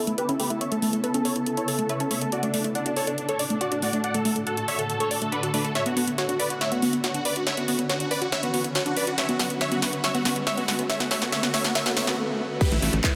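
Bright, shimmering and up front, this euphoric, driving uplifting trance excerpt in B minor at 140 BPM builds for 12.6 seconds as a huge detuned supersaw lead carries the melody under a sweeping low-pass filter, phaser and delay, while a lush wave-folded unison pluck arpeggiates, an ethereal shimmering pad sustains chords on Aadd9, D/A and Bmadd9, and a big-room dance drum kit with punchy snare, metallic hats, handclaps and crash plays a fill from 5.8 seconds. A background riser climbs from 8.3 seconds and a swell follows at 11.8 seconds, and after a brief break a punchy electronic kick lands at 12.6 seconds, joined at 12.7 seconds by a tight, saturated sequencer bass with sidechain pumping.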